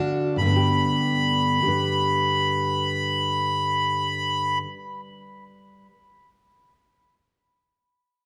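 A moderate reverb like that of a scoring stage surrounds this brief indie folk excerpt, giving it a spacious, hopeful and anthemic air. In 6/8 at 48 dotted-quarter beats per minute with a straight feel, it sits in G major, opening on a G chord at 0.4 seconds as the arrangement begins to build. A fingerpicked steel-string acoustic guitar carries the accompaniment from the start to 5.9 seconds, full-bodied and dark with a dreadnought's depth, up front, with audible finger squeak. An accordion takes the melody from 0.4 to 4.6 seconds, holding a high B5, its reedy tone smooth with slow beating and touched by analog delay. Both parts sit close to the listener, and the moment feels like the start of something larger.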